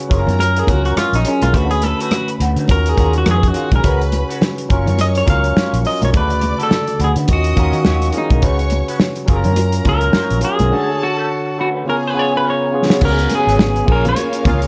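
An up-front, dark electric guitar at the edge of break-up carries the melody with a fingered, compressed tone, while a clean electric guitar solo runs through the first 13.0 seconds of this lush 1970s-style soul excerpt in F# major. The mood is smooth and warm at 105 BPM in 4/4, with a gentle swing on the sixteenths. The dark, foam-muted fingered bass and a tight soul drum kit with dark cymbals and a rolled-off top sit prominently, joined by ringing congas in the background. A barky, lightly overdriven tine electric piano comps through the chords. A bright, twangy guitar through a small old amp plays a lo-fi riff with wah and harmonic tremolo. A warm studio violin section adds a bowed second line with vibrato. After a drum fill at 12.4 seconds, the harmony moves from the repeating F#maj7, Dmaj7, D#m9 and C#7sus4 cycle toward C#7sus4 and A#m7. A brief stab from a vintage, jazz-style horn section lands at 14.5 seconds, all set in small room ambience.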